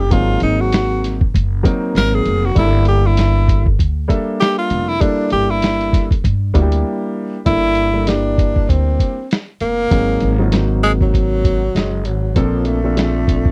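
A breathy tenor saxophone leads this smoky, cool jazz-hop excerpt, its subtone delivery full of vibrato and scooped notes as it carries the melody in a solo that runs to 7.5 seconds, with a break between 6.8 and 7.5 seconds. Underneath, at 98 BPM in a swung 4/4 and G dorian, a lo-fi sampler-style drum kit sits up front with a thumpy kick, a medium-tuned snare and hi-hat, its compressed, muffled, tape-warm sound re-recorded in a small room. A woody pizzicato upright bass with gut strings supplies a dark, low foundation, while a mellow grand piano with long sustain moves through rich chords such as Ab9, Gm69 and Bbmaj9. Near the close, at 11.8 seconds, a second tenor saxophone slips in quietly with a growling, raspy, gritty tone and a soft attack, adding a second line just before the first horn stops at 12.0 seconds. The sound is dry and close, in the manner of a 1970s studio, with little reverb around the players.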